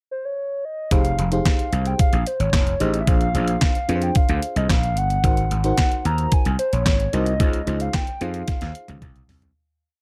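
A hollow, woody synth lead with chorus and vibrato opens this short, late-night boogie funk piece alone, singing a motif-based melody over a pickup bar before the band enters at 0.9 s. An overdriven, detuned 8-bit drum machine with a thumpy kick and a fat snare layered with handclaps drives a danceable four-on-the-floor beat up front, joined by a gritty, growly slap bass playing a syncopated line with slides and chromatic approach notes. Mellow FM electric piano with tremolo adds rootless, syncopated chords with grace notes through a dark, dry production that fades out from 7.4 s and ends on a drum fill.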